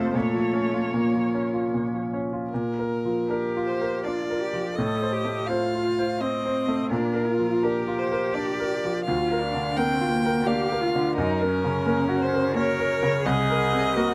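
A brilliant grand piano sits up front, its accompaniment ranging from deep bass to the middle register with audible action noise adding an intimate, present quality to this yearning, melancholic slow movement for piano quartet. Cut from a longer piece, it moves in a rubato 3/4 at roughly 74-88 BPM in Bb major, with the violin, viola, cello and piano playing together throughout. The violin carries the melody with a clear, smooth, even tone and vibrato, while the cello shapes a focused second line beneath it. Further back, the viola adds rich, expressive accompaniment coloured by vibrato and portamento. The harmony opens on Bb minor before brightening to Bb major at 2.5 s, later drifting to Gb and settling on Cm7 at 13.3 s. A moderate stone-room reverb and a dark production give the ensemble a softly enclosed, intimate sound.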